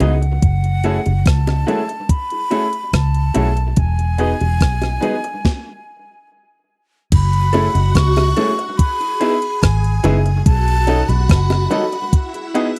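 A breathy, vibrato-laden flute with tape echo sings a longing melody over a clear, intimate baby grand piano, slightly broken-up guitar stabs, a dark, foam-muted bass sitting up front and a thumpy, gated 80s drum machine, with tight, high-tuned bongos tucked in the background. After a stop from 5.5 to 7.1 seconds, a swirling, bright string machine with phaser and ensemble chorus joins as a sustained second line. This smooth lovers rock fragment is cut from a longer piece and has a dry, close 1970s-style studio sound.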